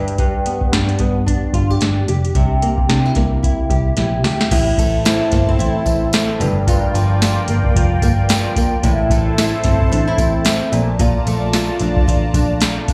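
A loose 16th-note swing at 111 BPM in 4/4 drives this mellow, hazy stretch of indie bedroom pop, cut from a longer piece and heard as if through a club's PA with light reverb. A soft vintage rhythm box sits up front, its deep kick, crisp snare, metallic hats and crash carrying an overdriven grit and the air of a large room, while a muted picked electric bass adds a dark, round, foam-damped low end. A fingerpicked nylon-string guitar, boxy and close, plays the accompaniment through subtle chorus, vibrato and slapback echo over chords moving from G7 to C7. After a drum fill at 4.0 seconds, the harmony turns toward Am, Gm7 and Bbmaj7, and at 4.5 seconds a swirling, detuned sawtooth pad with phaser and chorus swells in slowly on sustained chords, joined by a jingly tambourine in the background.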